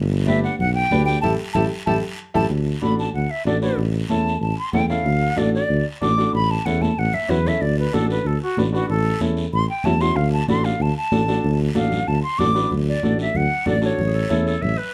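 A mellow, punchy tuba opens this festive cumbia on its own, with light vibrato and scooped notes up front, before congas, guiro, flute and upright piano join at 0.3 seconds at a brisk 188 BPM in D major. After a band accent and a drum fill set things up, the airy silver concert flute takes a joyful solo from 2.5 to 12.7 seconds, its vibrato and soft attack carried forward by a plate reverb. Underneath, the woody upright piano keeps up a clear, intimate accompaniment with audible action noise and long sustain, while bright, soft-handed congas sit in the background beside a raspy guiro. The harmony moves mostly between D and A, and a second drum fill arrives around 6.7 seconds. Near the close, a bright clarinet with a jazz inflection slips in at 14.1 seconds for a brief second line as this cut from a longer piece ends, all wrapped in a dark, light-reverb production.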